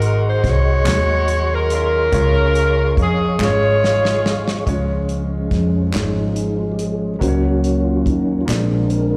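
A tight, clear saxophone section carries the melody up front in this jubilant, soulful slow gospel passage in a straight-feel 6/8, its vibrato touched by a slapback echo. Underneath, a grand piano with intimate, audible action noise fills in the accompaniment, while a soft tonewheel organ holds flute-like chords with chorus vibrato, key click and a stopped rotary speaker. A woody, dark pizzicato upright bass and a dry soul drum kit with a punchy kick, medium-tuned snare and hi-hat anchor the groove, with crisp group handclaps joining in the background from 0.9 seconds and a drum fill arriving at 3.4 seconds. After the saxophones finish, the organ takes a solo from 4.7 seconds as a smooth-topped French horn section enters in the background with sustained chords. The whole cut is heard as a live gig through a club PA, with light reverb and small room ambience, and it is taken from a longer piece.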